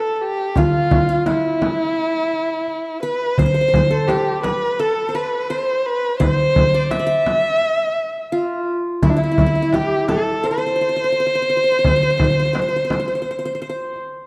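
A rich, bowed kamancheh with vibrato and portamento sings the melody up front while a bright, fingerpicked qanun carries a second line from the first moment, joined at 0.6 seconds by a crisp, saturated metal-shell darbuka and a deep, vintage frame drum in this passionate, festive Turkish makam ensemble passage, cut from a longer piece and set in a moderate concert-hall reverb with a dark, warm production.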